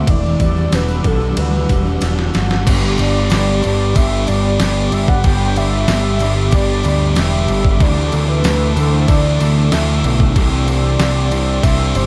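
A dreamy, blissful shoegaze and dream pop excerpt opens with a mellow, horn-like sawtooth synth lead carrying the melody over a smooth analog pad in the background. Both are thickened by chorus, while a slightly broken-up guitar through a small old amp plays a riff bathed in reverse reverb and a dark fuzz guitar with ensemble chorus riffs further back. A growling, round overdriven bass and a thumpy, tape-toned 8-bit drum machine sit up front with a faint, jingly tambourine, and a drum fill at 2.0 seconds carries the chords from Em9 into G, Dsus2 and Cadd9, the lead's vibrato and slapback echo floating in a dark, warm digital ambience.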